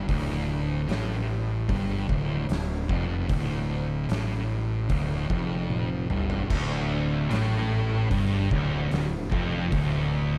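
Stoner and doom metal with a heavy, ominous mood, taken from a longer piece and built on a slow, straight pulse over a single D minor chord. A thick fuzz guitar carries the riff low in its range from the start, dark, picked and up front, and a second guitar of the same distorted, fuzz-laden character joins the riff at 6.5 seconds. Underneath, a fingered electric bass growls with overdriven fuzz, its bright, direct-and-amped tone sitting in the deepest register. An oversized, low-tuned acoustic kit of kick, snare, hi-hat, toms and crash sounds saturated and gritty, with a fat snare, a punchy kick and a bright stone-room character, and it breaks into a fill from 5.7 to 6.5 seconds. The production is dark and warm with light reverb.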